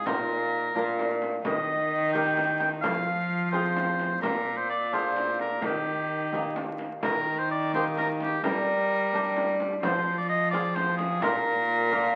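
Heard through the crackle of a very old 78 rpm record, this short excerpt of a Renaissance-style consort dance sits in a moderate studio ambience with a short half-second decay. The mood is stately and courtly, moving in a straight 6/8 at 86 beats per minute in E-flat major, and the opening phrase returns at 7.0 seconds. Up front, a clear oboe carries the melody between G4 and G5 with light vibrato in a classical solo manner, while a single bowed cello supplies the bass with a rich, reedy gut-string tone in period style. Beneath them, a fingerpicked lute with double gut strings, some doubled at the octave, adds delicate accompaniment. A small, bright frame drum sounds distant, as if in a large room. The harmony moves from a suspended B-flat through E-flat, F minor and B-flat seventh, touching G minor before closing on a suspended B-flat.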